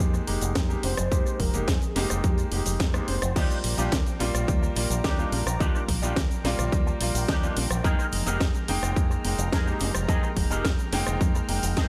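A punchy, overdriven electronic kick drives this sunny, feel-good nu-disco excerpt at 107 BPM in straight 4/4, arriving at 0.6 seconds and sitting up front over a house drum kit with a cracking snare, rim click, hi-hat, crash and cabasa, both re-recorded in a large room and overdriven, with the kit also carrying analog delay. A fingered electric bass, bright and run through an envelope filter, pumps beneath a clear grand piano that carries the accompaniment with sidechain pumping and analog delay, while very quiet congas and cabasa add hard-handed acoustic colour from a small room. A thick, dark unison lead steps in briefly from 0.8 to 3.3 seconds, drenched in dub echo and set in the background. At 3.4 seconds a lush, airy detuned pad swells into sustained chords with chorus, and a twangy, clean picked electric guitar with an envelope filter takes up a riff through ensemble chorus and delay. 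The harmony moves from Fm11 to Ebmaj7 and back to Fm11, all within an echo-heavy mix lifted by light reverb and digital ambience.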